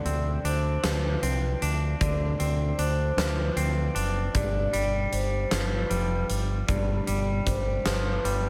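A lush hall reverb and big arena sound frame this cinematic, cathartic post-rock fragment in a slow, straight 6/8, moving from Dm7 to G7 at 4.3 seconds. A twangy, clean electric guitar and a mellow vibraphone with soft mallets and motor vibrato play arpeggios through analog delay and slapback echo, while a growling, overdriven fingered bass sits up front, the loudest part. A huge arena drum kit with a fat snare, punchy kick and hi-hat drives beneath them.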